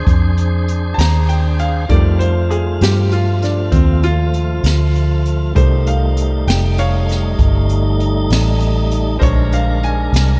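Soulful and gritty, this slow 12/8 blues moves at 66 BPM with a straight feel, shifting from Bb9 to F9 and back to Bb9 in a brief cut from a longer piece. A bright, woody upright piano enters at 0.9 seconds and takes the solo. Beneath it, a full, lightly overdriven tonewheel organ holds sustained chords with key click and a fast rotary speaker, and a dark, round, foam-muted fingered electric bass sits punchy and up front. A jazz kit played with brushes adds a high-tuned snare and boomy kick, all in light reverb with small room ambience.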